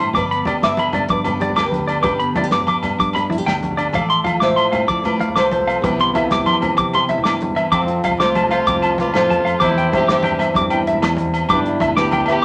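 A studio reverb lends this short highlife guitar-band excerpt a glossy, roomy sheen, and the mood is carefree and danceable at 127 BPM in a rolling 12/8. Up front, a clean electric guitar plays bright, twangy, compressed arpeggios high on the neck, colored by a harmonic tremolo, while a full-bodied nylon-string guitar with fresh strings fingerpicks a deep classical accompaniment beneath it. A boxy fingerpicked acoustic guitar carries the swing-style melody, supported by a round, amped fingered bass sitting in the background. A damped 70s kit with a tight kick, medium-tuned snare and rolled-off top keeps things dry, joined by ringing agogo bells from a distant large room and soft-handed congas. At 7.7 seconds a raspy, growling trumpet enters with scooped notes and light vibrato as a jazzy second line, while the chords move from G through F/A and Cmaj7 to F, C/E and a closing G6.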